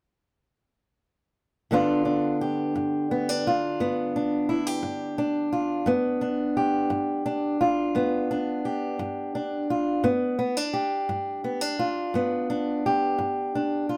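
A fingerpicked old ladder-braced acoustic guitar sits up front in this short blues fragment, its boxy tone carrying a faint finger squeak along the strings. The mood is laid-back yet rollicking, moving in a slow, rolling 12/8 with a straight feel. The guitar plays an accompanying role, entering at 1.7 seconds on a G7 chord and holding to it through 14.0 seconds across a range from G2 to G4. A moderate studio ambience gives the instrument a little air around its close, warm voice. Cut from a longer piece, the passage has the easygoing charm of a porch-side fingerpicked tune caught mid-song.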